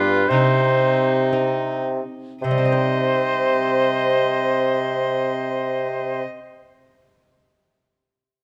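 Introspective and grave, this short excerpt from a baroque-style sonata movement in C minor moves in a slow 6/8 at 52-62 BPM, easing its tempo over the first 2.4 seconds as a warm, vibrato-touched oboe carries the melody over a rich, gut-string violin second line, a bright fingerpicked lute with double strings, and a mellow bassoon bass sitting up front, all in a moderate concert hall reverb with close, detailed miking, the lute ringing on alone until 6.5 seconds.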